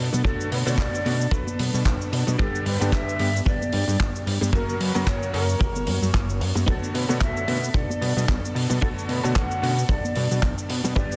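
An airy, mellow jazz flute carries the melody in this groovy, sensual nu-disco excerpt, its expressive, tongued phrases touched with vibrato and sitting at a distance, trailed by analog delay. Beneath it, a fat, detuned sawtooth bass with a filter sweep pumps against a punchy, roomy kick drum, and these two form the loudest layer of the mix. A bright, cutting electric grand piano supplies accompaniment with vintage 12-bit sampler grit, chorused unisons and its own sidechain pumping, while a clean, direct-recorded electric guitar plays a compressed, picked riff through ensemble chorus further back. A loose indie drum kit with cabasa, handclaps and hi-hat is heard in a distant studio room, joined by ringing congas in the background, and the swung sixteenths give the groove an easy sway. A very quiet, dark string section holds soft, bowed sul tasto chords over a cycle of Bm7, G and F#, returning to Bm7 at 6.7 seconds, all within a dense, heavily limited master with light reverb.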